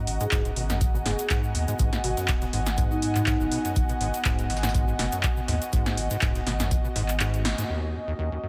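Lightly reverberant and raw, this trippy acid house fragment rides a squelchy, resonant square-wave acid bass under a filter sweep, a thick saturated sub bass and a deep analog kick, while a smooth detuned sawtooth pad and an airy, warbling breathy pad pump with sidechain and chorus over an Abm7 that moves to Ebm7 at 7.7 seconds. A punchy electro drum machine with metallic hats and handclaps sits over a very quiet, gritty overdriven breakbeat kit with tambourine, and a grainy egg shaker stays in the background. A mellow, dark vibraphone with soft mallets rings through delay until 3.6 seconds, and near the end the kick drops out at 7.2 seconds before a drum fill and band accent land at 7.5 seconds.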